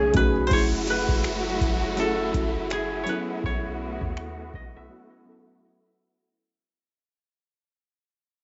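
Moody and longing, this brief contemporary R&B fragment moves with a loose, swung 16th-note feel and is heard through the hazy, muffled lens of a home cassette recording with light reverb. A bright, woody koto, plucked with fingerpicks and dry in tone, carries the melody, while soft, intimate synth keys with a chorused shimmer and a faint noise layer fill in the accompaniment. Up front, a warm studio string section holds sustained chords with vibrato and expressive portamento, moving from B13 to F#m9 and then B7sus4. Underneath, a booming analog drum machine with a deep kick, metallic hats and finger snaps is overdriven and tape-saturated, and a clean, sine-like 808-style bass sits dark and boomy in the background. From 0.5 seconds an electronic downlifter slides in as a filter sweep and fade-out take hold. The drums and bass drop away near 4.9 seconds, leaving the koto, keys, strings and downlifter to drift out by 6.4 seconds.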